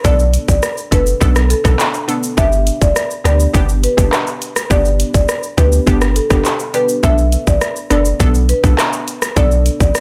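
Tough and sultry, this dancehall excerpt at 103 BPM in B minor sets a woody, mid-forward marimba melody with digital delay over a glassy, chorused wavetable pluck, a deep sub bass with a pitch-drop attack, and an up-front island pop drum kit of tight kick, handclaps, hi-hat, rim click and shaker, all moving from Bm7 to G at 2.4 seconds and back to Bm7 at 7.0 seconds in a digital ambience.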